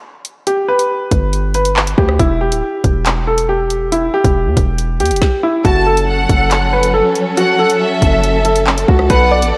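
A clear concert grand piano carries the melody through this dark, cold drill excerpt, its natural tone and deep bass sitting up front and trailed by a diffuse ambient delay. The drum kit enters at 0.2 seconds with a half-time feel at 139 BPM in 4/4, pairing a hard-clipped kick and woody snare with handclaps, rim clicks and warm hi-hats. A hard-hitting 808-style bass arrives at 1.1 seconds, punchy and heavy with a sine body, a noise layer and a fast attack that decays, while the harmony moves from G to Em in F# phrygian. At 5.6 seconds the music shifts to F#m as a lush symphonic string section brings sustained, bowed chords with vibrato and expressive portamento. A smooth, even studio violin section adds a higher second line, also touched by diffuse delay, and the whole mix is dreamy and soaked in a lush hall reverb.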